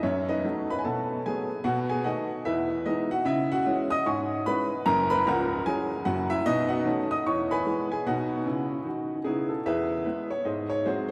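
A bouncy swung eighth-note feel drives this exuberant stride-piano jazz fragment, cut from a longer piece, in which a lone upright piano, woody, boxy and close, with its action noise audible, romps through dominant-seventh-laced changes across a broad range while a long cathedral reverb casts its notes into a vast, echoing space.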